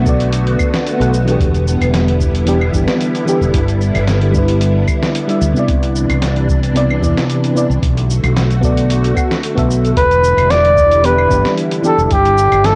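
A steady, straight 4/4 groove sets the pace of this wistful, smooth sunset chillout piece. It is built on a deep, tape-softened electronic kick and a gritty, overdriven sampler-style soul kit of hi-hat, snare, claves and cabasa that sits low in the mix with a dusty cassette character. A round, dark fretless electric bass sits up front, anchoring a mellow progression that moves through Bm7, Em7, G6 and Cmaj9. Above it, an FM electric piano with a warbling, vintage tone, fast attack and decaying notes carries the accompaniment through chorus and analog delay, while a silky string machine holds slow-attack sustained chords coloured by phaser and ensemble chorus. At 10.0 s a flugelhorn enters up front with a brief jazz-style solo line of scooped notes, a soft attack and a smooth top. This excerpt has the hazy feel of a home cassette recording, with light reverb and a rolled-off high end.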